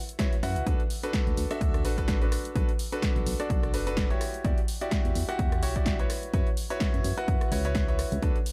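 Set in a digital ambience, this uplifting, euphoric piano house excerpt with a swung sixteenth feel sets a bright, brilliant concert grand piano riff, sidechain-pumped and trailed by digital delay, over a layered, overdriven electronic kick re-recorded in a large room, a punchy analog drum machine of hi-hat, ride cymbal, rim click and snare, and a round, dark, pumping FM bass with tube saturation, across chords of F#7sus4, D6, Bm7 and Em9.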